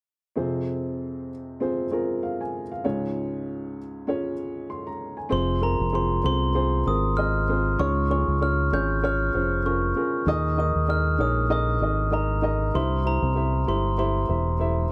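A lightly swung sixteenth-note lilt in 4/4 carries this earnest, bittersweet piano-driven pop excerpt, opening at 0.4 seconds with an upright piano alone, its woody, boxy tone close and intimate with audible action noise. At 5.3 seconds a fingered electric bass enters, round, punchy and amped, alongside a glockenspiel melody played with rubber mallets that rings high, bell-like and mellow. Light reverb surrounds the trio as the harmony moves from F minor through D-flat and a suspended E-flat to a closing C chord.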